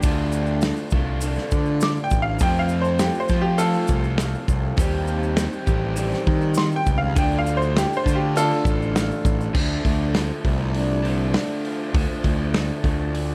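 Bittersweet and restless, this indie rock excerpt at 101 BPM sets a bright, woody, slightly detuned upright piano soloing over Dm, F and Cm until 9.5 seconds, backed by a fuzz-driven picked bass and a punchy, up-front loose drum kit with dark cymbals, a twangy guitar through a small old amp, a lo-fi garage guitar steeped in lush chorus and tape echo, and a grainy tube shaker, before piano and shaker drop out and the band carries on to 13.3 seconds in a dark production with light reverb.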